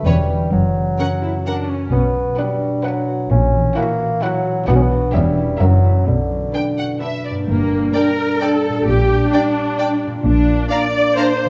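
Dark and reverberant in a recital-hall space, this playful, whimsical film cue in 3/4 at 130 BPM moves through B minor with a sneaky, magical air: ringing fingerpicked harp arpeggios and a smooth-topped bassoon accompany a distant, lush violin melody and a second violin line in the background, over up-front violas with expressive portamento, focused cellos and rich double basses, until a shift to G minor at 7.5 s brings mellow French horn chords and a soft, very quiet clarinet line entering at 7.9 s.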